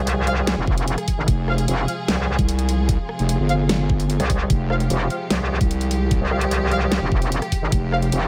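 Heavy wobble dubstep in F minor at 149 BPM with a half-time feel, this short excerpt cut from a longer piece sounds heavy and chaotic, resting on a single F minor chord throughout. A metallic, aggressive wobble bass with FM bite, overdrive and chorus sits up front from the very start, joined at 1.3 seconds by a second, mellower square-wave wobble bass that shares the same low register. A lush, close-miked studio string section holds bowed, vibrato-rich chords underneath, pumped by sidechain compression. A soft-attack brass ensemble in a classical style adds stabs trailed by dub echo. The tape-warm dubstep kit brings a huge snare, rim clicks and brilliant hi-hats, while an up-front electronic kick with a knocking punch enters at 0.7 seconds, all set in a digital ambience.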